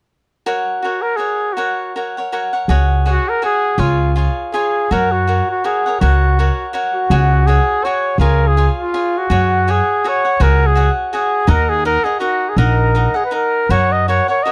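A crisp, picked cavaquinho opens this festive, romantic mariachi-style passage at 0.5 s, picking warm acoustic chords up front in a lilting triple metre with a light swing. Almost at once a clear trumpet takes the melody, playing solo in a polished classical style that sits slightly forward of the accompaniment. At 2.7 s a woody, dark upright bass enters pizzicato, its steel-string tone giving the low end a firm, rounded body. The harmony moves between the home chord and suspended and plain dominant colours, and a second section from 4.9 s adds a minor-chord turn before resolving. The sound is dry and close, like a 1970s studio session, with just a touch of reverb, and the piece is cut from a longer performance.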